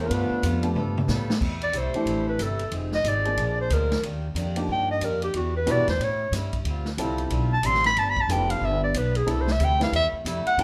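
Swinging at 183 BPM in 4/4, this energetic big band jazz cut in C major opens with a mellow saxophone section carrying the melody over a soft-attacked trombone section, both ending by 0.6 s; a woody, growly upright bass, a boxy picked archtop guitar and a punchy vintage drum kit with a rolled-off top keep the swing going, with the drums playing a fill from 0.8 s, while a short-sustained grand piano accompanies and an up-front clarinet with vibrato solos from 1.4 s over changes such as Fm7, Bb7 and Ebmaj7, heard from further back in a reverberant club room.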